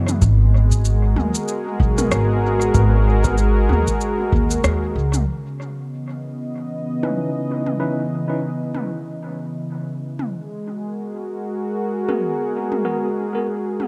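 A dark, close-sounding production with little reverb gives this hazy, deep ambient dub fragment a dry intimacy, set to a lightly swung sixteenth-note feel. A smooth, detuned sawtooth pad sits up front with a soft attack and chorus, holding mellow sustained chords that move from G#m9 to C#m9 and back. A woody, growly pizzicato upright bass plays alongside it up front, and it drops out at 5.2 s, while a tape-warm electronic kick thuds deep in the background until 4.5 s. Throughout, an overdriven, produced electronic drum kit of rim clicks, shaker and toms sits low in the mix under a dub echo. From 2.0 s a clean tine electric piano adds stabs through built-in speakers, colored by a low-pass filter and dub echo, with a filter sweep running across its part in the second half.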